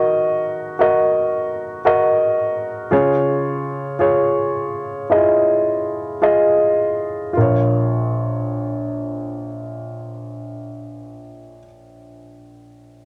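In a straight, slow 4/4 that slows down over the first 7.4 seconds, this melancholic, heartbroken pop fragment sets a warm, natural baby grand piano up front as accompaniment, its cassette-tape colour bathed in a wet spring reverb as it moves from Ebm to Db and settles on Bbm at 7.4 seconds, with the home-recorded cassette sound carrying through until it cuts off at 13.1 seconds.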